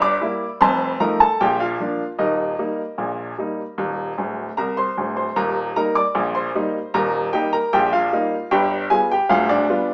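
The recording has a small-speaker character and a wet studio reverb, placing the listener a little back in the room. It is a short, lively, jaunty piece of ragtime piano in Eb major at 76 BPM in 2/4, played with a straight feel and cut from a longer piece. A single upright piano carries everything, with a bright, woody tone, short sustain and audible action noise that make it feel intimate. The harmony starts on a rootless C7 and moves through F7 and Bb to Eb. The piano spans from D1 up to D6 across two statements of the same opening strain, with a fill from 4.2 to 5.4 seconds leading into the repeat. A G7 arrives at 8.5 seconds near the close.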